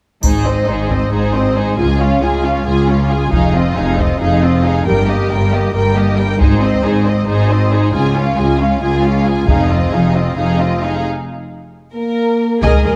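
Heavy-stick taiko drums drive this adventurous, triumphant fragment of an epic orchestral film score in an asymmetric 7/8, while a brief triangle sounds only at the opening, until 1.1 s. Above them, a dark, close violin section carries the melody with expressive vibrato and portamento, joined by a smooth second violin line, lush violas and a rich, even cello and double bass foundation. After a build-up through an Ab major progression, the harmony drops away into a break at 11.0 s with a drum fill, and a distant, soft-attack French horn section enters with sustained chords at 11.9 s, all set in a moderate scoring-stage reverb.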